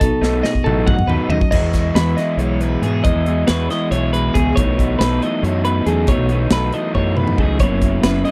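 Playful and intricate, this short excerpt cut from a longer math rock and midwest emo piece races along at 277 BPM in a straight 7/8, centred on E major. Two bright, clean twelve-string electric guitars share the top, one playing compressed, twangy picked accompaniment while the other, set further back, picks arpeggios high in its range. A growling fingered electric bass with overdrive drives the low end, and an up-front modern studio drum kit with a punchy kick, medium-tuned snare, hi-hat, toms and crash sounds airy and polished in a small room, with fills at 0.2 and 7.0 seconds. A raw, lo-fi garage guitar, overdriven and double-tracked, enters at 0.2 seconds with a riff. The harmony moves from B7 to an opening on Emaj9 at 1.5 seconds, then through B7sus4 to F#7sus4, all captured in a dry, close 1970s-style studio sound.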